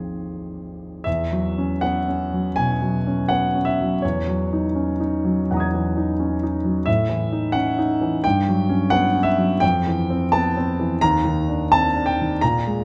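A clear, intimate grand piano plays alone in this dreamy, serene stretch of impressionist classical music, cut from a longer piece and moving with rubato in 4/4 between 65 and 91 BPM, tuned to A4 = 441 Hz. Sitting up front with a natural tone and audible action noise, the piano spans Ab1 to Ab6, drifting through colourful harmonies such as E69, F#13/E, Gmaj7#11 and Fmaj7#11 before settling on D#5 near 11.0 seconds. A moderate recital hall reverb surrounds the instrument, giving the 12.8-second passage a gentle sense of space.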